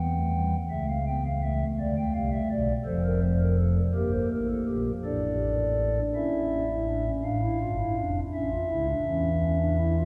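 Set in 6/8 with a straight, steady pulse felt in dotted quarters, this brief passage, cut from a longer piece, is a baroque-style four-voice fugue for solo pipe organ, serious in mood yet driving. The organ speaks through soft, hollow stopped-flute pipes with a mellow, romantic voicing. It sits up front and spans from F1 in the pedal depths to G5 in the treble. The harmony opens on E minor and moves through A7 over C#, D minor, F and G minor to a suspended A chord that settles onto A major. At 7.3 seconds a new phrase begins on D minor, passes through A and closes on a bare E seventh. A cathedral reverb with a 6.1-second decay wraps the instrument in the deep resonance of a church or concert hall.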